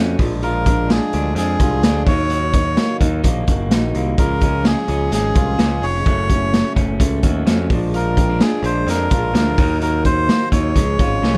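Lightly reverberant and a little lo-fi, this short cut from a longer jangly indie pop piece feels bright and nostalgic in a straight 4/4. A raw garage drum kit sits up front from 0.2 seconds, its boomy kick, medium-tuned snare, hi-hat and toms sounding gritty in a small, pumping room with a rolled-off top, and it closes with a fill at 11.2 seconds. A growly, bright picked electric bass plays the low line directly and up front. Two electric guitars run through a small old amp, both slightly broken-up and compressed: one picks a lo-fi accompaniment, while the other plays arpeggios in the background with tube saturation and vibrato. A reedy, nasal melodica carries the melody from 0.4 seconds with a breathy, dark tone over chords moving from Bb7 to Ebm, Db and Gbm.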